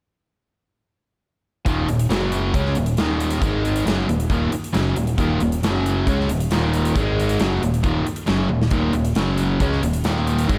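At 1.7 seconds the full band kicks in together: a biting, overdriven guitar riff sits up front while a brighter overdriven guitar plays its own riff further back, with a growling, overdriven bass underneath. An acoustic rock kit in a big room drives the confident classic rock groove with a punchy kick, medium-tuned snare, hi-hat and toms, and a drum fill lands at 8.5 seconds. The riff cycles through Eb5, Gb5 and Ab5 under light reverb and studio ambience until the clip stops at 10.6 seconds.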